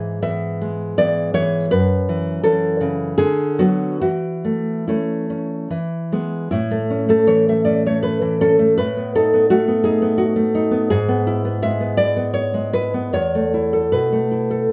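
A fingerpicked nylon-string guitar carries this romantic solo classical piece on its own, sitting up front with a dark, acoustic tone and a finger squeak from the strings. The mood is nostalgic and warm, moving in 3/4 at a rubato pace that drifts between 69 and 86 BPM in A major, with the guitar ranging from E2 up to E5. Taken from a longer work, the passage presents the same opening theme twice, the second statement beginning at 6.5 seconds on an A chord. The harmony travels through colours such as F#m7, Bm/D and B7/A before settling on an Esus4 near 13.2 seconds, leaving the phrase suspended. Close, detailed microphones capture the sound of the playing, while a slapback echo on the guitar and a light reverb add a faint sense of space.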